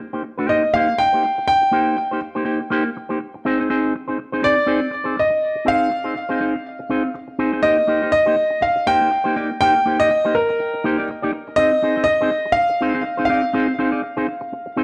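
An electric guitar with an envelope filter opens this disco excerpt, its bright, twangy, picked tone sitting up front as it carries the accompaniment over a driving, sultry groove with a light swing. A clear, natural grand piano enters at 0.5 s to take the melody, its phrases trailed by tape echo, while chords of Eb6 and Fm7 alternate beneath. The whole passage sits in a wet large-studio reverb with a small room ambience and a softened top end, and it changes section at 7.6 s before cutting off at 14.8 s.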